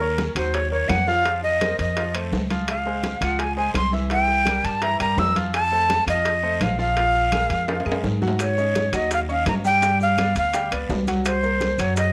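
Salsa at 168 BPM, danceable and passionate: a breathy, expressive metal jazz flute with vibrato leads up front over a woody, thumpy pizzicato upright bass and a brilliant, short-sustained grand piano with a cassette-tape tint, while ringing timbales and very quiet claves join soft-handed congas, tight high-tuned bongos and raspy guiro sitting in the background, a drum fill arrives at 7.7 s and grainy maracas join at 8.4 s, all set in a small room with moderate spring reverb on a homemade cassette recording.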